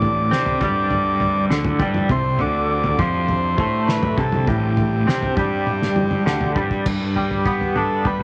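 A buzzy combo organ melody with tape echo opens this hypnotic, mysterious psychedelic rock excerpt over a twangy, double-tracked electric guitar riff with tremolo, a round fuzz bass, a reedy, breathing pedal harmonium holding very quiet chords and a muffled, cloth-damped drum kit with a fat snare and dark cymbals, while a nasal, overtone-sweeping drone sounds faintly from 0.1 to 6.9 seconds and a drum fill at 5.7 seconds carries the Cadd9 harmony to G under light studio reverb.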